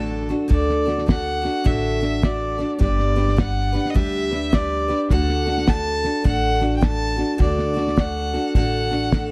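Honky-tonk and classic country with an easygoing, nostalgic mood, this short excerpt rolls along in a relaxed swung 4/4. A clear, focused fiddle carries the melody with light vibrato, sounding like a single bowed player set somewhat distant yet still up front. Beneath it, a bright, full-bodied picked acoustic guitar plays accompaniment with the sheen of fresh strings and an occasional finger squeak, while a woody, thumpy upright bass with gut strings anchors the low end. A cloth-damped drum kit enters at 0.3 seconds with a fat snare, tight kick and hi-hat, its tone dry and dark with a rolled-off top. A lush symphonic string section appears only briefly at the very start, very quiet and smooth, before dropping away at 0.5 seconds. The harmony moves from D to G at 2.8 seconds and back to D at 5.1 seconds, all set in a light reverb with small room ambience.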